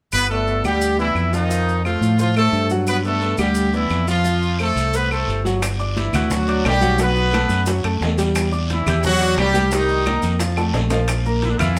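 A joyful, danceable salsa clip in G major at 175 BPM, led by a brilliant horn section with light vibrato and octave doubling up front over a bright fingered electric bass, while a clear grand piano with audible action noise joins at 0.3 seconds. Woody claves and grainy maracas tick in the background from the start, a raspy guiro enters at 2.9 seconds, and at 5.6 seconds the second section brings in high-tuned congas, round low-tuned bongos and ringing metal-shelled timbales. A drum fill near the end and a moderate room reverb give the sense of a band playing live together.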